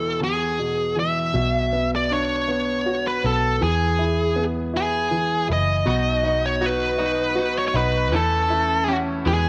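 A distorted, high-gain lead guitar sings the melody up front over a clear, polished baby grand piano in this heartfelt, romantic six-eight pop ballad, moving slowly at 53 dotted-quarter beats per minute with a light reverb. A dark, round, foam-muted fingered bass arrives at 1.3 seconds as the harmony moves from E5 through Bm and E. At 5.9 seconds, a bright, twangy twelve-string electric guitar adds compressed, picked arpeggios over B and A/E, and the piano closes this cut from a longer piece with a fill at 9.3 seconds.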